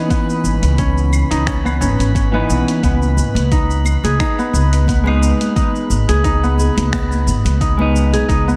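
A mystical, hypnotic stretch of organic downtempo at 88 BPM opens on ringing, fingerpicked Celtic harp arpeggios over a dark, clean semi-hollow electric guitar with sidechain pumping, both trailed by diffuse ambient delay, while a glassy texture of drifting overtones hovers in the background with chorus. A deep electronic kick and a gritty, compressed sampler-style kit of cabasa, claves, finger snaps and hi-hat arrive at 0.1 seconds with a light 16th-note swing, and a woody, thumpy pizzicato upright bass on gut strings sits up front from 0.4 seconds, pumping as well. The harmony moves from C#m9 to G#m at 2.8 seconds, and very quiet congas slip in at 3.2 seconds, all in a dreamy mix soaked in cathedral reverb.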